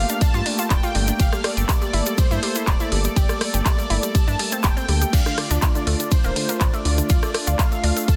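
A punchy, up-front electronic kick drives this dreamy progressive house excerpt at 122 BPM alongside a deep, round analog bass and a house kit of bright hats, handclaps, rim clicks, ride and crash, with a grainy egg shaker sitting close and dry in the background. A full-bodied, detuned supersaw carries the melody over smooth pad chords with 12-bit sampler grit and a nasal, wave-folded pluck arpeggio, the supersaw and pluck sharing a digital delay while sidechain pumping breathes through the synths and bass. The harmony moves from Gmadd9 to Dm at 5.1 seconds, all in a dense, heavily limited mix with little reverb.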